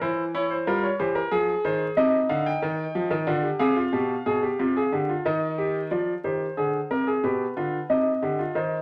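Serious and driving, this short cut from a longer baroque-style three-part fugue in F minor moves at 91 BPM in a straight 3/4, tuned to A4 = 445 Hz. A solo concert grand piano sits up front with a clear, natural tone, deep bass and long sustain, ranging from B2 to G5 through harmony that passes from C7/E and Fm through Dm7b5 and G7/B to Eb. It sounds in a stone room with a wet 0.9-second reverb under a vinyl crackle, and a second section begins at 5.9 seconds, returning to Fm before settling on Cm.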